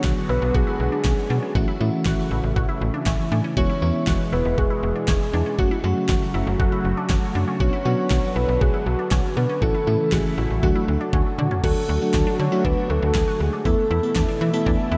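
Synth-pop with a bright, nostalgic mood, this dreamy, reverb-soaked clip sets a snappy, metallic slap-like FM bass and a pop drum kit with knocking kick and fat snare up front, a glassy, bell-like FM electric piano with chorus that adds recurring fills, a thick, detuned unison pad treated with chorus and phaser, a squelchy resonant blip pluck playing arpeggios through phaser and delay, and a soft, round octave-layered synth lead with vibrato carrying the melody, while a drum fill at 11.1 seconds leads into a new section.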